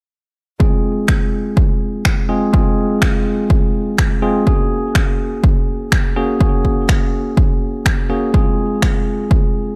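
Earthy and driving, this short afro house cut runs at 124 BPM in 4/4 with a 59% swing on the sixteenths, set in F phrygian and tuned slightly sharp to A4 = 441 Hz. A bell-like, bright tine electric piano plays up-front stabs from 0.6 seconds, pumping with sidechain and softened by a low-pass filter and tape echo as the chords move from Fm to Gbadd9 at 4.5 seconds and back to Fm. A punchy, overdriven electronic kick sits forward in the mix, joined at 1.1 seconds by layered, overdriven electronic finger snaps, both carrying the ring of a large room within a digital ambience.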